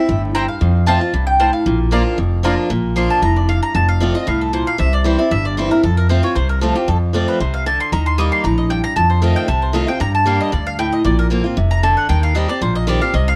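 A round, double-strung mandolin melody opens this joyful, virtuosic bluegrass passage in Bb major over a boxy, up-front parlour guitar, with a dark, thumpy pizzicato upright bass on gut strings arriving a moment later at a brisk 230 BPM with a light swing. The melody mandolin drops out at 1.8 seconds, and a second, woody mandolin that has been punching out stabs steps forward with a solo from 2.7 seconds. That solo runs over changes moving through F, C, F, Eb, F7, Gm and Bbadd9 to Eb6. The sound is close and detailed, with little reverb and a vinyl crackle, in what is clearly a section cut from a longer piece.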